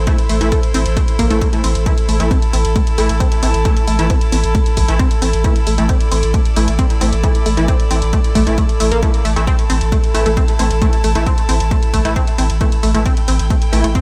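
A dry, punchy electronic kick sits up front in this intense, relentless stretch of driving peak-time techno, cut from a longer piece and pounding a straight 4/4 at 134 BPM in A minor over an A5 chord. Beneath it, a deep, thick sine sub bass holds a low A with overdrive, a low-pass filter and sidechain pumping, while an analog drum machine adds hi-hat and ride cymbal, both with sidechain pumping. A tight, detuned sawtooth sequenced synth drives the riff with a filter pluck, chorus, tube saturation and dub echo, evolving as it repeats. Aggressive rave stabs cut through with bright, ring-modulated unison sawtooth and triangle tones, decaying into chorus, reverb and analog delay. Behind it all, a rich chamber string section bows an earthy, smooth-topped ensemble texture with light vibrato, also pumping, across the full 14.0 seconds. The mix carries light reverb but leans heavily on echo.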